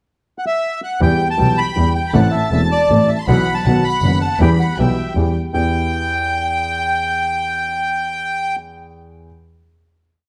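A reedy, dark bandoneon sits up front and carries the melody from 0.4 seconds, shaping song-like motifs in this short, tense and dramatic tango waltz in E minor. The 3/4 metre moves at 159 BPM with a rubato feel, and from 1.0 seconds a bowed violin section adds a smooth, even counter-melody with vibrato, placed close and sounding clearly softer. A clear concert grand piano with a worn character, deep bass and short sustain provides the accompaniment in waltz time with an accent on one. A single bowed double bass, nasal and boxy with a soft attack, vibrato and portamento, plays the same accented waltz rhythm until 5.7 seconds. The harmony moves from Em through Am, Bsus4 and B back to Em before settling on a final chord, all within a moderate large studio reverb and a dark, warm production.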